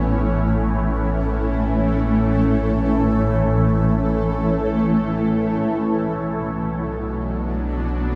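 Ambient in free time and A major, this luminous, peaceful excerpt is cut from a longer piece and lasts 8.2 seconds. A shimmering, ethereal pad carries sustained chords from start to finish, its triangle tone thickened by unison voices and an octave-up shimmer, with a slow attack, long release and grainy, granular texture. Chorus, built-in reverb and phaser color the pad, which sits bright and up front. Beneath it, a deep, round sine sub bass holds mellow sustained notes in the low register. The harmony rests on A before moving to B minor at 5.6 seconds, and a lush, wet hall reverb with a three-second decay surrounds the sound in spacious air.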